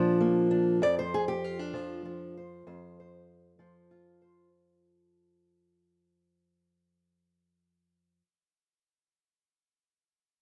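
A fingerpicked acoustic archtop guitar carries this short piece of acoustic country blues on its own, sitting up front with a dark, woody tone and the dull edge of old strings. It moves at a slow, swaggering 65 BPM in 12/8 with a straight feel, giving the playing a soulful, unhurried weight. The harmony opens on Bb and shifts to F5 at 0.8 seconds, and the guitar ranges from a low F2 up to D5. The sound is dry and close, in the manner of a 1970s studio recording, with a touch of small-room ambience around the instrument. Cut from a longer piece, it fades out over its opening 4.5 seconds, while the guitar rings on until 8.2 seconds.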